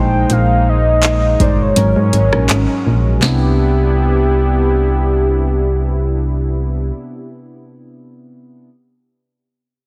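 Tender and dreamy, this contemporary R&B fragment, cut from a longer piece, moves at 82 BPM in 4/4 with a light 16th-note swing, sliding from Bb9sus4 to Ab9sus4 and settling on Cmaj9. A mellow, horn-like sawtooth lead with vibrato and chorus carries the melody over a smooth detuned analog pad and soft, round electric-piano-like keys. A punchy FM bass sits up front with a booming analog drum machine, whose deep kick, crisp snare, handclaps, rim click and metallic hi-hats play only from 0.3 to 3.4 seconds, while the keys ring on alone until 8.7 seconds, all in a heavily compressed, radio-like digital ambience.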